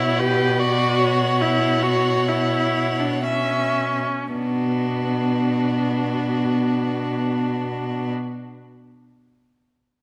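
A string quartet begins together in a slow, melancholic and elegiac romantic movement in B minor, in free time: a first violin carries a focused, vibrato melody above a smooth, even second violin line, while a rich viola accompaniment sits up front and a clear cello holds the bass. The pace slows through the first 4.3 seconds before the harmony settles onto B minor as a new section begins, and all four players stop at 8.1 seconds. A moderate concert hall reverb surrounds the bowed strings in this passage cut from a longer piece.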